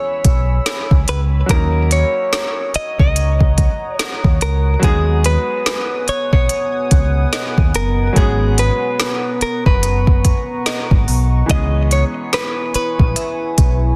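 Sensual and late-night, this slow contemporary R&B excerpt sways with a light swing, led by a clean, compressed electric guitar melody trailed by delay over a clear, worn grand piano and a deep, dark pad whose detuned sawtooth layers carry chorus and reverb. A round, dark fingered bass and an up-front electronic drum kit with a soft kick, woody snare and smooth hats enter at 0.2 seconds, moving through chords from C#m7 to G#m11 and back. At 7.3 seconds a crystalline FM bell joins in the background with chorus and delay, all within a dense, heavily limited modern mix.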